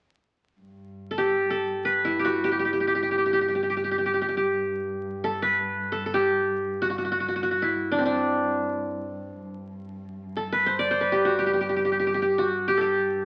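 Unfolding in free time, this short fragment of Arabic music sits in G maqam ajam, tuned to A4 = 439 Hz, and carries a stately, festive mood. A bowed cello enters at 0.6 seconds, holding a low drone on G2 with a dark, woody tone, a smooth top and vibrato, set quietly beneath everything else. At 1.1 seconds the qanun joins and takes the melody up front, ranging from C4 to D5. Played with fingerpicks on its triple strings, it sounds bright-edged and glittering against the cello's dusky hum. The recording has the character of a very old 78 rpm record, with vinyl crackle, and a wet studio reverb with an RT60 of 0.9 seconds lends the performance a lingering glow until both parts stop at 13.2 seconds.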